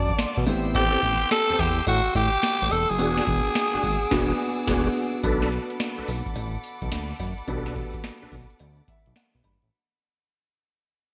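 A growling, raspy tenor saxophone carries the melody up front with delay until 4.7 seconds, riding a punchy, bouncy new jack swing groove at 107 BPM with a 16th-note swing over Am7, E9 and Bm7. A booming analog drum machine with gated reverb, deep kick, crisp snare and metallic hats drives the track alongside a fat, detuned sawtooth bass, while a baby grand piano with subtle chorus adds fills at the start and near the end, and a very quiet cowbell sits close and dry. Background tonewheel organ stabs with key click and fast rotary speaker join at 0.7 seconds, a distant bowed string section holds sustained chords, a band accent lands around 4.1 seconds, and the bright 1980s-style digital mix, bathed in lush hall reverb, fades out from 5.2 seconds in this excerpt.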